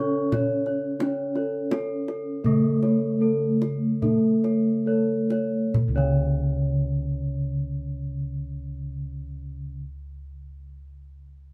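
A stately, hypnotic stretch of Javanese gamelan opens at once on a dark, mellow bronze metallophone melody over a shimmering metallophone accompaniment, round, beating bossed-gong arpeggios, a warm, ringing metallophone arpeggio line and soft, padded bossed gongs in the bass, while a tight kendang played with hard hands joins at 0.3 seconds and stops at 6.6 seconds, the very slow 33-46 BPM pulse slowing down through the opening 5.8 seconds as the ensemble plays live in one room with a wet studio ambience.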